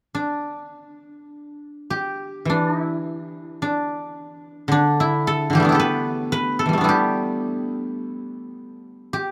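Pastoral and flowing, this brief fragment of Chinese traditional music is cut from a longer piece and features a solo guzheng. The acoustic zither is played with fingerpicks and sits up front, its ringing, silvery tone carrying a gentle warmth across a range from D3 to B4. The rubato feel in 2/4 lets the phrases breathe freely rather than marching to a strict pulse. The instrument sounds from 0.1 to 9.3 seconds, surrounded by light reverb and a touch of studio ambience. The overall mix has the rough, informal character of a home demo.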